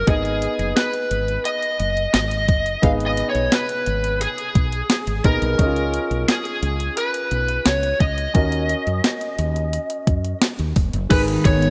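An overdriven lead guitar through a small cranked amp carries the melody up front, its dark, picked tone touched with subtle chorus, in this nostalgic yet urgent 1980s-style pop excerpt in a straight 4/4. Beneath it, a clean 12-bit digital drum machine with a thumpy kick and medium-tuned snare sits forward in the mix, its sampler-style hits overdriven and re-recorded in a small room, with crash cymbal and hi-hat filling out the kit. A woody fretless electric bass, round and hollow-bodied, anchors the low end, while a polished grand piano supplies present accompaniment through a progression that moves from G#m to C#add9 and D#m7 before returning to G#m. Just before the cut, at 11.1 seconds, a very quiet crunchy overdriven guitar enters, followed at 11.4 seconds by an ethereal, airy pad of detuned, wave-folded chords with ensemble chorus and a slow attack, sitting mellow in the background. 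A moderate, lush hall reverb and bright digital production give the whole piece its period sheen.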